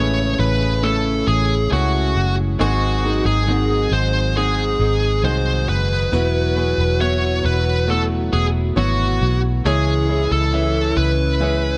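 A small, lightly reverberant room frames this longing, melancholic pop excerpt in C# minor at a slow 68 BPM, moving from Amaj7 through G#7 and Esus2 to C#m. An up-front, high-gain lead guitar carries the melody with distortion and delay, while a dark, foam-muted fingered bass sits round and punchy beneath it. A clear, natural grand piano provides accompaniment, a mellow French horn section with light vibrato adds a second line in the background, and a very quiet, bright twelve-string electric guitar picks compressed arpeggios.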